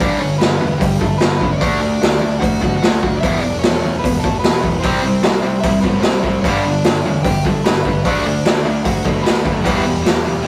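A raw garage drum kit sits up front from the first beat, gritty and saturated with a boomy kick, joined at once by a bright, overdriven guitar riff, a picked overdriven guitar melody, and a growly fuzz bass tucked in the background. This rebellious, energetic punk rock excerpt drives in a straight 4/4 at 149 BPM in D major, moving through G, D, E5 and C, then back to G, D and Em. At 4.8 s a tight, distorted second riff guitar slips in behind, the whole band caught in a rough rehearsal-room sound with light reverb.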